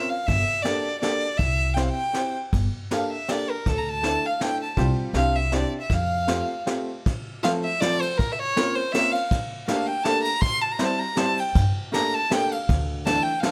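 This musette waltz, cut from a longer piece, carries a nostalgic, bittersweet mood in a lilting three-beat metre, with a swung, rubato feel. A rich, smooth bowed violin sings the melody up front, its tone even and touched with vibrato. A bright, slightly detuned upright piano with a worn, woody character and short sustain supplies the accompaniment, moving through colourful chords such as Gmadd9, Dsus2 and Bbmadd9. A dark pizzicato upright bass with steel strings plays from 0.3 to 6.4 seconds, drops out, and returns at 11.6 seconds. A vintage kit played with brushes, with a high-tuned snare, tight kick and ride cymbal, sounds roomy and rolled-off at the top, while the overall sound carries little reverb.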